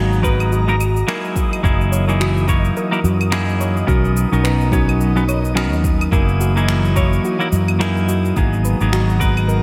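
Relaxed and wistful, this sunset chillout excerpt moves at 107 BPM in 4/4 with a gentle 16th-note swing, drifting through rich chords from G#m9 to F#13 and Bmaj9 before returning to G#m9. Up front, a clean, compressed semi-hollow electric guitar plays picked accompaniment with delay, alongside a dark, round fretless electric bass. Behind them, an airy, breathy pad holds sustained chords with chorus and a slow attack, while a wind-like tuned noise texture hovers high in the background, carrying its own reverb and ensemble chorus. Layered electronic cabasa, claves and finger snaps, given overdrive and gated reverb, come in at 0.1 seconds. A soft, round pluck follows at 0.2 seconds with decaying arpeggios colored by chorus and delay, joined by a deep, overdriven electronic kick drum. The bright, 1980s-style digital production sits in a lush hall reverb that lends the whole piece a glossy, spacious sheen.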